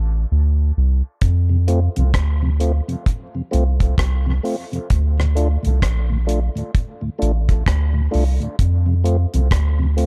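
Deep and heavy, this dub reggae excerpt moves at a slow 65 BPM in 4/4 with a swung sixteenth feel. A round, soft sub bass with a fast attack opens alone as a break, the dry, acoustic drum kit with its tight kick, hi-hat and rim click arrives at 1.2 seconds, and a mellow tonewheel organ through a stopped rotary speaker and dub echo slips in just after at 1.5 seconds. The bass and drums sit up front in a dark, warm production with little reverb, as the harmony moves from F to D minor and back to F.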